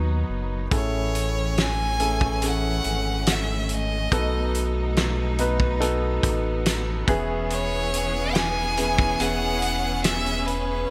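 A heartfelt, hopeful pop ballad at 71 BPM in a straight 4/4, this excerpt opens on an intimate concert grand piano with audible action noise and long sustain, a rich bowed string section holding chords, and a deep sine-toned sub bass with octave, moving from Bmaj7 through Amaj7 and B7 to E6. At 0.7 seconds a bright, intense solo violin with vibrato takes the melody, joined by a loose acoustic indie drum kit with a fat snare, punchy kick and hi-hat, its gated reverb and rolled-off top sitting up front. The bright 1980s-style digital production adds light reverb and small room ambience.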